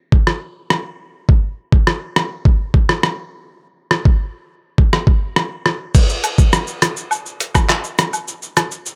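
A gritty, overdriven sampler-style drum kit sits up front in this short dancehall excerpt, its compressed, thumpy kick joined by hi-hat, rim click, handclaps, shaker and crash cymbal in a straight, hypnotic, bouncy groove with the character of a small room. At 6.2 seconds, as the second section gets under way, a close, acoustic layer of cabasa and woodblock slips in quietly beneath the kit and drops out at 8.7 seconds, all within a digital ambience.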